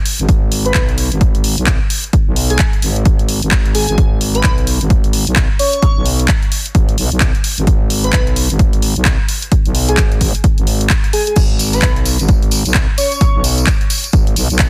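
Gritty and swaggering, this bass house excerpt rides a punchy, up-front electronic kick and a house kit of crash, handclaps and warm hats under a thick, growling FM bass with overdrive and sidechain pumping, while an airy, dreamy lead with chorus and dub echo floats above, and a jingly tambourine slips in from the background at 11.4 seconds, all in a dense, dry, heavily limited mix.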